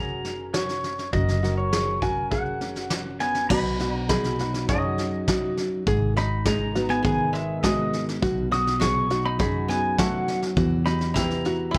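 Hopeful and peaceful, this excerpt from a longer acoustic folk piece moves at 102 BPM in a straight 4/4, set in B major. A pedal steel guitar carries the melody high above the band, its clean, compressed tone shaped by fingerpicks, slide and volume swells. Beneath it, a dark, full-bodied jumbo steel-string guitar is fingerpicked for accompaniment, while an open-back banjo adds plunky, twangy arpeggios and a fingered electric bass provides a round, foam-muted low end. A soft brush drum kit enters at 0.2 seconds, sitting up front with a fat snare, tight kick, crash cymbal and a rolled-off top. At 3.2 seconds a dry, woody koto joins with a mellow second line, just before the harmony shifts from F# to B and moves through G#m toward a closing Emadd9, all wrapped in light reverb.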